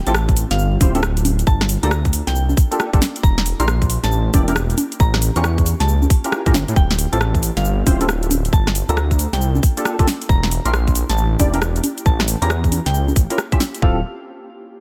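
An ethereal, airy pad opens the clip at 0.0 seconds, holding very quiet sustained chords with a slow attack and long release, softened by ensemble chorus and built-in reverb. Almost at once the rest of the track arrives: a bouncy, moody two-step UK garage groove at 136 BPM in D minor, swung on the sixteenths and cut from a longer piece. A deep, rumbling detuned saw bass sits up front with a saturated, beating edge, while a tight electronic kick and a garage kit of woody snare, metallic hats, rim click, shaker and congas drive the rhythm. Percussive, hollow organ stabs with ensemble chorus and delay punctuate the harmony, and a soft FM synth bell carries a gentle, warbling vintage melody high above through chorus and delay. The chords cycle through Dm11, Gm9, Em7b5 and A7b9b13, giving the drop a moody colour, and the mix stays dry and close, with little reverb overall.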